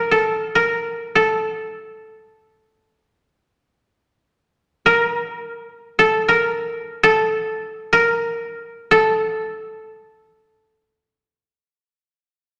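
A solo koto, plucked with fingerpicks and sitting up front with a woody, dry tone, opens this austere and calm Japanese traditional excerpt in free time, moving between A4 and D5 within the reverberant wash of a scoring stage until the strings fall silent at 11.6 seconds.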